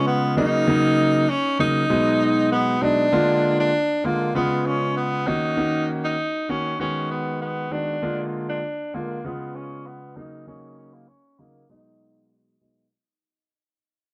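A straight 4/4 afrobeats pulse at 98 BPM sets a mellow, sultry mood in Eb minor, in this short cut from a longer piece. A clear tenor saxophone carries the melody in a pop-style solo, sung with light vibrato and a distant, roomy quality even as it sits up front, playing from the start to 12.3 seconds. Beneath it, a concert grand piano supplies intimate accompaniment with deep bass, long sustain and audible action noise, its polished tone present until 12.8 seconds. The harmony circles through Ebm7, B6, Bb7 and Db7, and from 3.1 seconds a filter sweep and fade-out shape the rest of the passage. Both parts pass through a low-pass filter, and the dry, gritty hardware recording carries light reverb with a small room ambience.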